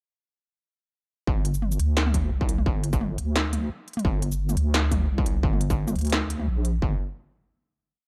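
A deep, wobbling bass carries this short, complete half-time drum and bass piece, sliding through long gliding notes in its low register with a detuned, saturated square-and-sine tone, thickened by chorus and held up front. The mood is dark and cinematic, and the whole track is built around a single drop that runs from 1.3 to 6.8 seconds. Alongside the bass, a distorted, overdriven electronic kick lands in a half-time pulse with a touch of studio reverb. An industrial drum kit adds a sparse, swung half-time beat of clanging snare, crisp closed hats, shaker and low toms, also overdriven and placed up front in a studio reverb. A final note closes the piece from 6.8 seconds, rounding off a dark, close-sounding production.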